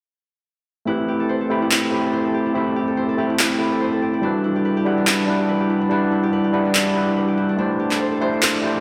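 At 0.9 seconds, an overdriven tine electric piano and a concert harp begin together, opening this emotional, bittersweet future bass piece cut from a longer work. The electric piano carries the accompaniment up front, barky and gritty through a combo amp, while the harp's fingerpicked arpeggios ring softly beneath it with a warm, low-passed tone; both trail off into a diffuse ambient delay. Electronic handclaps join at 1.7 seconds, layered and overdriven, with the close character of a small room, sitting prominently in the mix. The groove moves at 143 BPM in 4/4 with a half-time feel and a gentle swing on the sixteenths, as the harmony drifts from Am7 to Em7 and settles on D7sus4. A lush hall reverb soaks the whole dreamy mix until it ends at 8.8 seconds.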